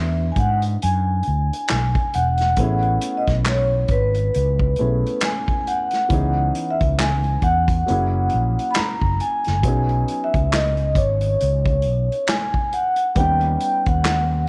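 R&B and neo-soul with a late-night, soulful mood and a gentle swing on the sixteenths, built on a progression moving from E9 through Amaj9, C#m7 and F#7 to B69 and D#7alt. Up front, a mellow vibraphone played with soft mallets carries the melody with a ringing, airy tone and slow motor vibrato, while a fretless electric bass sits equally close, amped and thickened by transformer saturation. Beneath them a grand piano gives intimate accompaniment with audible action noise, and from 0.4 s an acoustic drum kit played with bundle sticks adds hi-hat, a medium-tuned snare, a punchy kick and handclaps, sounding distant and roomy in the studio space.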